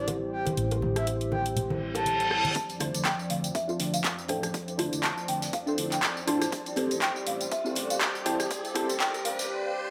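Deep house at 121 BPM in D minor with a late-night mood, where a breathy, flute-like synth lead with 12-bit grit and delay floats over a moody detuned pad and a round hollow-body electric bass, both pumping against the sidechain, while an up-front overdriven house kit of bright hats, claps, rim clicks and tambourine plays alongside soft-handed bongos and congas until a reverse cymbal at 1.8 seconds opens a build-up at 2.6 seconds, where a punchy background kick, a very quiet crisp fusion kit, a muted phasered dub chord stab under a filter sweep and a rising riser enter, followed by a woody dry marimba at 3.1 seconds, all moving from Am7 to Dm9 and back in a dreamy, reverb-soaked mix.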